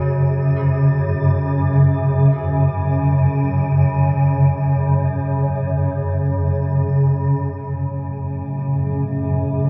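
Dark and cavernous, this fragment of a longer dark ambient drone piece unfolds in free time, steeped in a wet cathedral reverb with a 6.0-second tail. A swarming drone sits up front from the start to the end at 9.7 s, a tense, evolving, wave-folded mass of detuned sine and triangle tones with a granular grain, low between F#2 and C#3. In the background, an eerie, inharmonic FM synth bell plays arpeggios around F#4 with fast, decaying strikes, smeared by chorus and a diffuse ambient delay until it stops at 7.0 s. After the harmony settles on F#m at 7.0 s, a deep, moody pad enters very quietly at 8.0 s, its detuned sawtooth and sine layers, sub octave and chorus adding a dusky weight to sustained chords between A3 and F#4. The result is a slow-breathing, shadowy soundscape built on long attacks and lingering releases.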